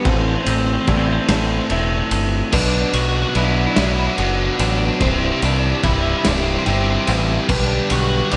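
A growling, punchy picked electric bass with overdrive sits up front in this soaring, hopeful post-rock excerpt at 48 BPM in 6/8 and C lydian, joined by a loose, muffled, lo-fi indie drum kit, a clean twelve-string electric guitar carrying the melody with slapback echo, a compressed overdriven guitar riff in the background, a biting overdriven guitar riff entering at 2.5 seconds, very quiet fingered arpeggios from a twangy electric guitar, and dark, intimate arpeggios from a felt-muted upright piano with audible action noise and slapback echo, set in small room ambience over chords moving from Am through Bm and C to G/B.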